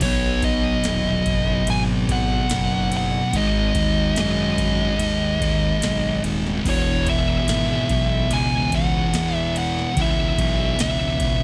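Stoner and doom metal at a slow 72 BPM in 4/4, heavy and brooding, this 11.4-second excerpt sets a dark, fuzz-drenched lead guitar up front, carrying the melody between C#5 and G#5 over a B chord that moves to E5 at 6.7 seconds. Behind it, two thick fuzz guitars pick out a low riff, joined by a growly, punchy fingered bass with overdrive. A booming analog drum machine with a deep kick, crisp snare, crash and ride drives it all in a dry room with little reverb.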